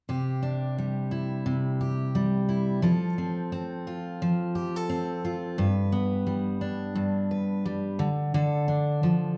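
A dark, reverberant recital-hall sound surrounds this short pop excerpt, with a wet tail hanging behind the playing. The only part is a picked steel-string acoustic guitar, a full-bodied jumbo instrument placed up front, its sound carrying a touch of finger squeak. It plays accompaniment from 0.1 to 9.4 seconds, moving through Cadd9, F, G and Dm over a gently swung sixteenth-note feel in 4/4. The mood is sunny and heartfelt. The passage is cut from a longer piece.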